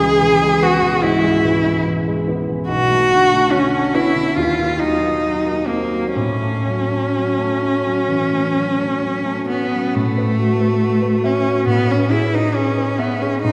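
This is a classical, impressionist duo for cello and baby grand piano, luminous and pastoral in mood, unfolding with a gently rubato feel in 4/4. A single bowed cello carries the melody in its middle register, its tone clear and focused, sung with vibrato and placed close and up front. The warm piano supplies the accompaniment across a broad span from deep bass to upper middle, sounding polished and present beside the cello. The harmonies drift from C#m7 through Bm7 and D#m6 to A6, then settle on Asus2 and a glowing Amaj9 near 11.7 seconds. The whole duo sits in a wet church reverb with a long 3.1-second tail, and this short excerpt, cut from a longer piece, runs for 13.5 seconds with both instruments playing from start to finish.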